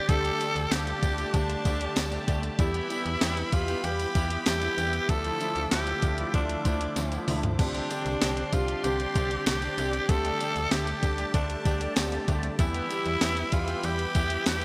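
A raspy, gritty tenor saxophone carries the melody up front in this glossy, nostalgic slice of 1980s-style pop at 96 BPM in G mixolydian, over an intimate grand piano with audible action noise, a swirling sawtooth pad with phaser and chorus, a twangy, slightly broken-up electric guitar riff, snappy FM bass with a metallic attack, a thumpy 12-bit drum machine with gated reverb and a drum fill at 7.0 seconds, and a faint jingly tambourine, all set in a lush hall reverb with bright digital production as chords move from Gsus2/D through Em, Dmadd9 and Csus2.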